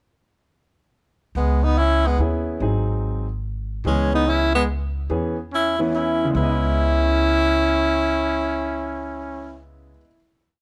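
The rhythm swings in 3/4 at 144 BPM, anchored by a pizzicato upright bass playing in a two-feel, its woody, thumpy steel-string tone sitting up front. At 1.4 s a breathy, punchy tenor saxophone takes the melody with a bebop-style theme, scooping into its notes, while a mellow trumpet with vibrato adds a harmony line mostly in thirds. A grand piano joins at 2.2 s with syncopated comping in drop2 voicings, its smooth, vintage tone filling out the C# minor harmony as the chords move from C#m7 to G#7 and back. The close-miked horns and a moderate club reverb give this short small-group swing and bop piece a moody feel, and it settles on a final chord from 6.3 s.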